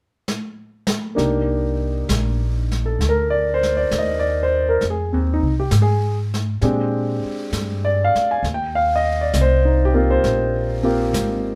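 Recorded live in one room with light reverb, this wistful, smoky jazz ballad opens with a brushed drum fill on snare and hi-hat at 0.3 seconds, before an up-front concert grand piano with a warm, deep bass and a woody, thumpy plucked upright bass on gut strings enter at 1.1 and 1.2 seconds to carry the swung progression from Cm9 through Fm7 and Bb13 to Eb69.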